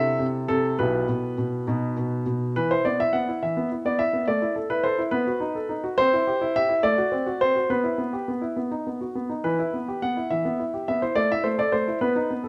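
A classical-period piano sonatina in E minor, this short excerpt moves at an unhurried 70 BPM in a straight 6/8, its mood elegant and serious. A clear, polished baby grand plays alone throughout, ranging from B1 up to F#5. It sits up front under close, detailed microphones, with a moderate recital-hall reverb around it. After a brief opening section, a longer passage begins at 2.6 seconds and passes through chords such as B7, C and F#dim/A before settling on E minor and closing on A5 at 11.2 seconds.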